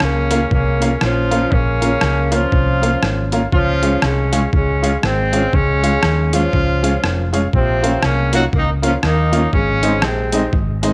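A light digital reverb surrounds this cheerful, bouncy ska groove, swung and cut from a longer piece. Up front, a mellow horn section carries the melody with light vibrato and octave doubling, its pop-style ensemble tone sounding distant and roomy. A round, punchy hollow-body electric bass sits just as forward, dark and amped. Beneath it, a trip hop sampler-style kit of kick, hi-hat and rim click is pitched down, compressed and gritty, with a thumpy kick, overdrive and the air of a large room. Further back, a clean, fingered electric guitar adds tremolo-tinged accompaniment, and a clear, woody upright piano with a smooth vintage character punctuates with stabs. The harmony rests on Db before moving to Bbm at 7.5 s and Ab at 9.5 s.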